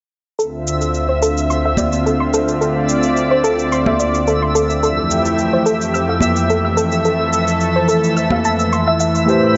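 Sunset chillout in a smooth, warm mood, cut from a longer piece and moving in a straight 4/4 over a Dm9 chord that gives way to Fmaj7 at 4.8 seconds. A lush, thick unison sawtooth pad sits up front with sustained chords, its detuned, warbling vintage character brightened by chorus, a slow attack and a long release. Beneath it, a soft, round pluck blends triangle, sine and sawtooth with a noise layer, playing dark, decaying arpeggios coloured by subtle chorus, delay and a gritty 12-bit sampler edge. A twinkling granular texture adds sparkling, octave-up FM shimmer with its own built-in reverb, while an electronic, overdriven shaker keeps time and ringing acoustic congas, struck with hard hands, come in from the background at 1.8 seconds. At 9.3 seconds a barky, gritty, overdriven tine electric piano enters up front through a combo amp, all set in a moderate concert hall reverb with a rolled-off top end.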